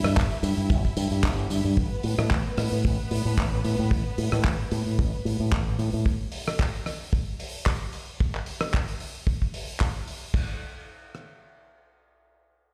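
Sensual and sleek, this nu-disco fragment, cut from a longer piece, moves at 112 BPM in 4/4 with a light sixteenth-note swing over Em/G and Asus2 chords. A bright, punchy fingered electric bass with an envelope filter sits up front and carries a filter sweep until it stops at 6.0 s. Beneath it, veiled, con sordino strings hold sustained chords with vibrato and sidechain pumping, while a dry, dark 70s drum kit supplies a tight kick and rim click up front, and a quieter second kit adds crash, handclaps, hi-hat and rim click until 10.5 s. A compressed, saturated tambourine flickers in the background for the first 1.7 s, and the mix sounds as if played on a big system in a bare room with stone reverb.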